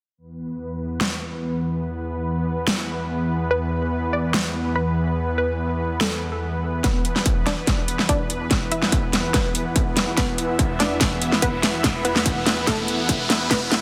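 A dense, heavily limited modern mix with light reverb carries this heavy, aggressive half-time wobble dubstep excerpt at 144 BPM. A lush, airy, detuned supersaw pad holds sustained chords from the start with sidechain pumping and a low-pass filter sweep. Up-front drums with a huge snare and metallic hats enter at 1.0 s, and a punchy, wave-folded unison pluck carries the melody through cassette tape and digital delay from 3.5 s. At 6.8 s a distorted electronic kick joins for the build-up and drum fill, a cloudy, blurred granular pad drifts in the background from 8.3 s, and a very quiet riser follows at 9.7 s.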